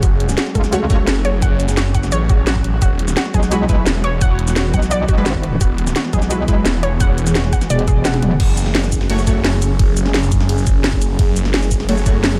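A thick, swirling detuned saw bass sits up front in this dark, aggressive excerpt of technical drum and bass, its phaser and tube saturation grinding alongside a knocking electronic kick at 172 BPM in a straight 4/4, centred on F# minor. A metallic, wobbling FM bass with chorus cuts in briefly near the start and returns at 3.3 seconds, while a cracking snare, bright hats, ride, crash, shaker and toms fill out a layered, produced drum kit that was re-recorded in a small room. Behind them, a swarming, tense drone holds sustained chords with a slow, evolving granular texture and pumps against the kick, and a lo-fi, warbling pluck spins arpeggios through chorus, cassette-tape colour and a diffuse ambient delay until 8.2 seconds. A bold, punchy orchestra-hit-like stab punctuates the mix from the background with its own reverb and delay, as the harmony moves from F#m to E and back to F#m. The kick drops out briefly at 8.1 seconds for a drum fill before the drop hits again, all set in light reverb with a digital ambience.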